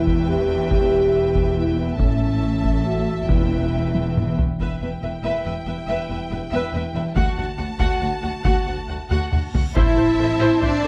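A dark, relentless stretch of epic orchestral film score opens with close, dry taiko drums struck with heavy sticks driving a straight 3/4 pulse at 140 BPM in E dorian, under lush bowed strings. Two violin sections carry the upper lines, one rich and focused on the melody and another smooth and even on a second line, while warm violas fill the accompaniment and a mellow, close-miked French horn section holds sustained chords. Expressive cellos with portamento sit in the background, and distant double basses anchor the low end as the harmony moves from Em through A and D. A brief timpani hit with hard mallets lands on E2 at 3.3 seconds, and drum fills push into each new phrase. Near the close a huge, dark reverse cymbal rises at 9.5 seconds into a very quiet impact at 9.8 seconds, where a faint studio string section joins on sustained Am chords, all set in a wet recital hall reverb with a dark production.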